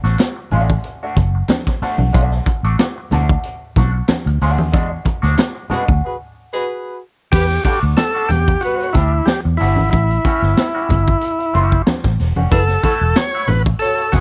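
A dry, close funk groove in B minor at 92 BPM opens with a raw garage drum kit, its high-tuned snare and punchy kick sounding gritty and saturated, beside a round, foam-muted fingered bass that sits up front. A clean, twangy electric guitar with wah and spring reverb plays accompaniment, while low-tuned, ringing congas and very quiet, crisp group handclaps join at 0.2 seconds, the claps dropping out at 5.5 seconds. The band hits accents from 4.7 seconds into a break, and a mellow horn section with light vibrato and tube saturation enters at 5.7 seconds as a second line. At 7.3 seconds a thick, overdriven tonewheel organ, with key click and percussive attack, takes the melody up front as the harmony moves from Bm7 and E9 to Em9, A6 and F#m7. The mood is driving and funky throughout this short slice of a longer piece.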